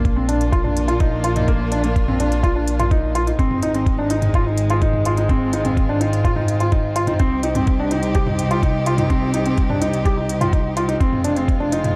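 Piano and strings electronica with a melancholic, moving cast, this short cut from a longer piece moves in a straight 4/4 over chords of Bb, Ab, C minor and F minor. A soft, felt-muted upright piano carries the riff up front, its mellow, intimate tone trailed by tape echo. Beneath it, a dark string quartet holds sustained chords with vibrato and portamento, one bowed player per line and a smooth top, while a bowed double bass section supplies an expressive low end, both strings breathing with sidechain pumping. A pitched-down, muffled, thumpy kick sits prominently in the mix, joined from 0.1 seconds by a produced electronic kit whose crisp hi-hats and toms carry overdrive and the air of a large room. Light studio reverb and a dark, warm production wrap the whole passage in an intimate, shadowed glow.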